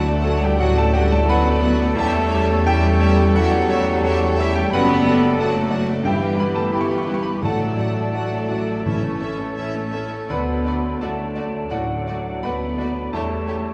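Passionate and lyrical, this excerpt from a romantic movement for piano and orchestra in D major moves at a rubato 79-92 BPM in 4/4. A clear, short-sustained baby grand piano carries the melody alongside a smooth studio violin section, while a background symphonic violin section, a hollow flute, a dark cor anglais and a very quiet clarinet add second lines. Beneath them, a faint viola section, a mellow bassoon, punchy French horns and trombones, and quiet trumpet stabs sit over a lush cello section and an up-front double bass section, with soft-mallet timpani sounding at 0.0 and again from 7.4 to 9.9 seconds, all set back in a reverberant recital hall.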